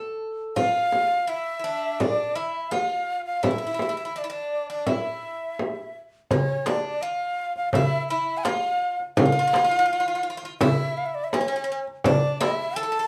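A breathy, reedy ney carries the second line up front, its bright, lifted tone and vibrato entering at 0.6 seconds with a soft attack. This is an excerpt of a stately, festive Turkish makam ensemble piece in E makam hicaz, moving at 84 BPM in a straight 4/4, tuned to A4 = 442 Hz. The Greek bouzouki opens at 0.0 seconds with the picked melody, its metallic double strings, partly octave-doubled, sitting further back in the mix. A small frame drum played with soft hands joins alongside the ney and sits up front in the small room. At 6.3 seconds the piece moves into its second section as a metal-shell darbuka arrives, crisp, compressed and saturated under hard hands. The whole has the rough feel of a home demo, with light, small-room reverb.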